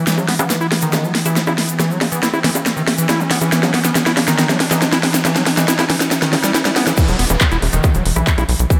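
Hypnotic and alien, this psychedelic trance cut builds for 7.0 seconds as a squelchy, gritty acid bass riff with distortion and dub echo undergoes a filter sweep, while an overdriven big-room drum kit with a huge snare, metallic hats, bongos, handclaps and crash plays a fill over a grainy egg shaker, a very quiet riser and downlifter, and a juicy ring-modulated blip pluck. Behind them a morphing, warbling wavetable pad holds sustained chords with chorus and sidechain pumping. At 7.0 seconds the drop lands with a tight electronic kick up front and a punchy, nasal sequencer bass, all set in a lush hall reverb.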